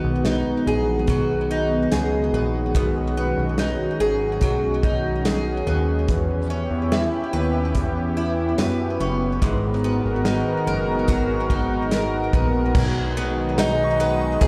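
A woody, octave-doubled twelve-string acoustic guitar picks arpeggios up front with subtle chorus and delay in this ethereal, floating dream pop excerpt, over a lush, detuned unison pad with chorus holding sustained chords, a fat sawtooth analog bass, and a loose indie drum kit with tight kick, medium-tuned snare, hi-hat, ride, crash and tambourine that enters at 0.2 seconds, while a bright FM bell with ensemble chorus and delay glimmers in the background from 13.6 seconds, the whole mix sitting in a large studio reverb and bare-room ambience.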